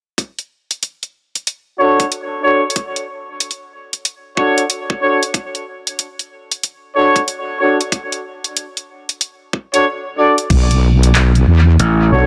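A gritty, funky glitch hop groove opens at 0.2 seconds with a layered electronic drum kit of bright hi-hats, handclaps and crash cymbal, overdriven, re-recorded in a small room and trailed by tape echo, over a knocking, high-pass-filtered electronic kick, both up front with a swung sixteenth-note feel. At 1.8 seconds a tight, clear horn section enters with pop-style stabs over a Dmaj7 chord, its smooth top shaped by sidechain pumping, a low-pass filter and tape echo. The kick drops out briefly before the music shifts at 10.5 seconds to a B7(no3) chord, where a heavy wobbling bass arrives loud and forward, blending sawtooth and sine tones with a fast attack, sustained notes, chorus and tube saturation for a mellow yet compressed weight. Near the close, a growly, punchy electric slap bass adds an overdriven, tube-saturated note. Light reverb and an echo-heavy mix give this fragment of a longer piece its dubby depth.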